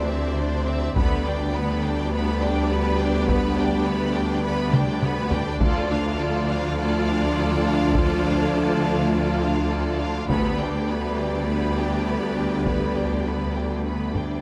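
Heavy-stick taiko drums drive this dark, epic cinematic orchestral cue at 103 BPM in 4/4, entering at 1.0 seconds beneath a smooth, lightly vibrato violin melody, a distant second violin line, lush violas, dark French horns and a soft-attack string section holding sustained chords over rich cellos and expressive double basses with portamento on D2, while very quiet hard-mallet timpani strike at 5.6 and 10.3 seconds, chords move from Cadd9/D and G/D to Dm, and a concert hall reverb surrounds the whole.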